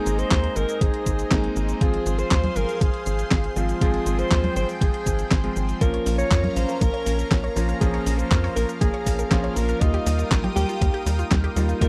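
A breathy alto saxophone opens this nostalgic, danceable italo disco excerpt, singing a smooth pop-style solo line with light vibrato and scooped notes through a tape echo. Beneath it, a lush, thick unison pad holds bright sustained chords treated with chorus and phaser, while a vintage electric grand piano adds clangy stabs with long sustain. Almost at once a tight sequencer bass drives forward, punchy and up front with a fast-attack filter pluck. The rhythm comes from a clean 12-bit drum machine with a fat snare, handclaps, hi-hat, cabasa and congas, joined at 0.3 seconds by a thumpy electronic kick, both tape-coloured and re-recorded in a small room. At 5.8 seconds a detuned unison pluck slips in behind the mix with echoing arpeggios, edged by a noise layer and ring modulation. The whole recording has the dry, close sound of a 1970s-style studio, set in a digital ambience.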